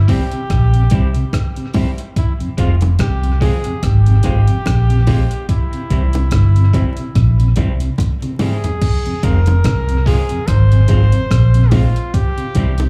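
A dark, round, foam-muted electric bass sits up front in this meditative, serious roots reggae excerpt, its amped tone anchoring a slow, swung groove in 4/4. Beside it, a gritty, compressed breakbeat-style drum kit with a thumpy kick drives the pulse with hi-hat, rim click, toms and crash, and a drum fill from 8.0 to 8.8 seconds leads into the second section. A clear flugelhorn carries the melody with a light vibrato and smooth top, its pop-style solo line trailed by tape echo. Underneath, a mellow tonewheel organ, lightly overdriven with chorus vibrato and a slow rotary speaker, and a slightly broken-up, lo-fi guitar through a small old amp, treated with spring reverb and echo, fill out the accompaniment, while low-tuned, close and dry bongos sit in the background. The harmony moves between C and F minor, and the whole mix sounds like a live gig heard through a club PA, with club reverb and vinyl crackle colouring the sound.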